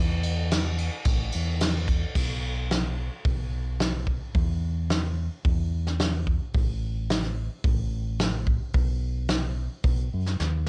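Folk rock and heartland rock with a jangly, open-road mood, this short cut from a longer piece pairs a dark, round fingered electric bass with a soft brush drum kit, whose fat snare and punchy kick sit up front with a cassette-tape grain in a dry home recording, closing on a drum fill at 10.4 seconds.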